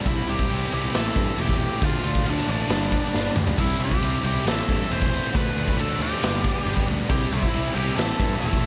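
Dark and cathartic, this short cut of quiet-loud alternative rock drives at 137 BPM in a straight 4/4, cycling through C, Am, Dm and G in A minor. A bright high-gain guitar riff and a dark, hollow-body overdriven semi-hollow guitar sit in the background beneath a fuzzy octave-fuzz lead melody that reaches as high as C6, while a warm, direct-and-amped fuzz bass anchors the low end. Up front, a raw garage kit with a punchy kick, medium-tuned snare, crash, ride and toms sounds saturated and gritty in a pumping stone room, with a drum fill at 3.1 seconds, all under light studio reverb.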